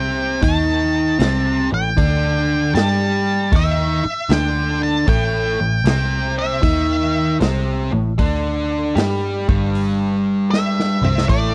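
An octave-fuzz lead guitar carries the melody up front, its dark, fuzzy tone sitting between D5 and A5 in this brooding, smoky excerpt of blues rock power trio and southern rock. Beneath it, a double-tracked overdriven electric guitar plays the riff with a picked attack, while a vintage muted electric bass adds a round, foam-muted low end. The raw garage drum kit enters at 0.4 seconds, its punchy kick, medium-tuned snare, hi-hat and toms sounding gritty and saturated with a rolled-off top. Moving at 77 BPM in 4/4 with a swung eighth-note feel, the music stays on A minor throughout. A drum fill arrives at 10.5 seconds, and the dry, close recording carries a 1970s studio character.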